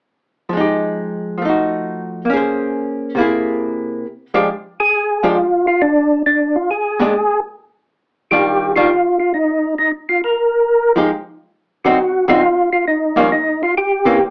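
Jazz with a late-night, bluesy mood, set in a swung 4/4 and cut from a longer piece. An electric, hollow-body archtop guitar opens the accompaniment at 0.5 seconds, its picked, compressed chords sounding dark and clean as the harmony moves through rich minor ninths and altered dominants. At 4.8 seconds a percussive tonewheel organ takes the melody, mellow and round, coloured by third harmonic percussion, chorus vibrato and a slow rotary speaker. Both parts sit up front, and midway through the chords briefly drop out before minor eleventh and altered dominant harmonies return. The sound is placed in a wet club reverb and heard from further back in the room, with an AM radio quality that lends a distant character.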